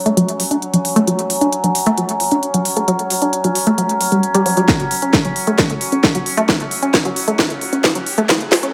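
A bright, resonant drone of sweeping overtones, pumping with the sidechain and shimmering with chorus and its own reverb, opens this intense, relentless build-up of driving peak-time techno, joined almost at once by a tight, detuned sawtooth riff with a fast filter pluck, chorus, dub echo and sidechain pumping, and by an up-front, overdriven drum kit of cracking snare and smooth, pumping hats, before a heavy, overdriven kick arrives with a drum fill at 4.7 seconds and a very quiet riser slips in at 7.2 seconds, the whole passage set in a wet stone-room reverb.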